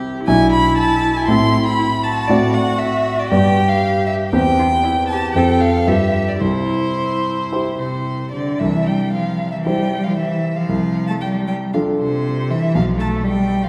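Heard from further back in the room, this recording sits in a wet scoring-stage reverb that lingers for about 2.0 seconds, giving this short cut from a longer piece a spacious glow. It is a quick classical-period movement for piano trio in C major at 117 BPM in 4/4, played with rubato in a restless, stormy mood and tuned to A4 = 436 Hz. The concert grand piano carries the accompaniment from the start, up front with a natural tone and deep bass. The violin enters with the melody at 0.3 seconds, a single bowed player placed up front whose vibrato, soft attack and portamento make the line expressive. Beneath it, the cello plays a second line, rich, smooth and even, bowed close with its own vibrato. The harmony passes through Am, D7/A and G to reach C at 6.4 seconds, and the opening phrase returns at 8.6 seconds before the passage closes on G7/B.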